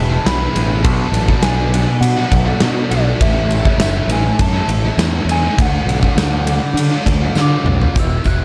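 A round, gentle synth lead carries the melody through chorus and tape echo over silky, very quiet string-machine chords, a thick fuzz guitar riff set in the background and a growling, punchy overdriven bass up front, moving through E, Bm7, A and D in this wistful, hazy shoegaze and dream-pop excerpt at 101 BPM in a straight 4/4. An overdriven electric guitar riff with reverse reverb joins almost at once, and the huge arena drum kit, with its punchy kick and bright cymbals in a pumping hall, enters at 0.3 seconds. A faint, jingly tambourine arrives at 3.8 seconds, and a drum fill rounds off the passage from 7.4 to 8.0 seconds within a dark, small-room production.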